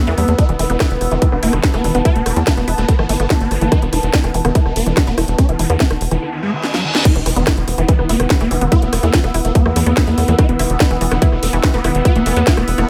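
Swarming, detuned rave lead with chorus, phaser and dub echo rides over a tight, punchy sequencer bass and an up-front electronic kick in this alien, driving psychedelic trance excerpt at 144 BPM, with a bubbling stepped-filter texture, an airy breathy pad and a warbling unison pluck pumping in the background beneath a garage kit's cracking snare, while a filter sweep, reverse cymbal and drum fill build to the drop and a very quiet impact at 7.1 seconds.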